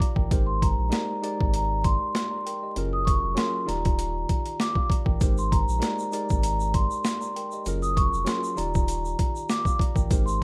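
A gritty, overdriven boom-bap drum kit with a thumpy kick and high-tuned snare sits up front at 98 BPM, carrying this warm, confident hip-hop excerpt in Ab lydian while a worn, slightly out-of-tune tine electric piano with cassette-tape colour moves through Abmaj9, Gbmaj9 and Ebmaj9, a round sine sub bass holds the low end, a soft-mallet vibraphone rings a metallic melody through delay, and a grainy egg shaker joins at 5.2 seconds over a rough home-demo mix with vinyl crackle.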